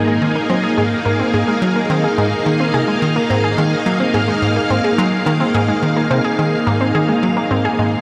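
Hypnotic and expansive, this ambient excerpt moves at 107 BPM in a straight 4/4 on a single Abadd9 chord, bathed in a huge, wet reverb with an 8.9-second tail. A vintage string machine sustains full-bodied, mellow ensemble chords up front with a slow attack and ensemble chorus, while a bright, detuned unison pluck traces arpeggios through tape echo. Beneath them, a tight, punchy sequencer bass drives a saturated, wave-folded riff with a moving notch, also fed through tape echo, and all three parts sound from the very start of the excerpt.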